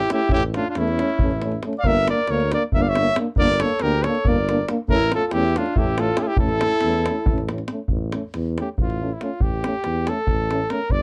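A close-miked cornet leads the melody from the opening, over a mellow alto saxophone second line with light vibrato and a soft attack, and a tuba bass, in a bittersweet, restless Balkan brass band piece in 7/8, cut from a longer performance. Two warm euphoniums provide accompaniment in the background, while a deep, dry davul sits up front. The saxophone drops out at 7.5 seconds, and from 7.9 seconds the cornet takes a solo through to the end, all in a dark production with light reverb.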